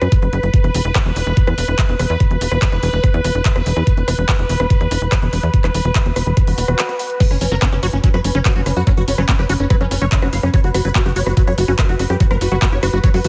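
A straight 4/4 pulse at 144 BPM drives this hypnotic psychedelic trance excerpt, where a knocking, tape-tinged electronic kick sits up front with an overdriven dance kit of crash, handclaps, hi-hat and rim click, a punchy sawtooth sequencer bass plucks under a bubbling, resonant stepped-filter texture of chorused sustained chords, a background swell enters at 6.5 seconds, and at 7.2 seconds a huge, detuned supersaw melody with phaser and dub echo arrives alongside a squelchy, filter-swept acid bass riff, both with sidechain pumping in a lightly reverberant digital space.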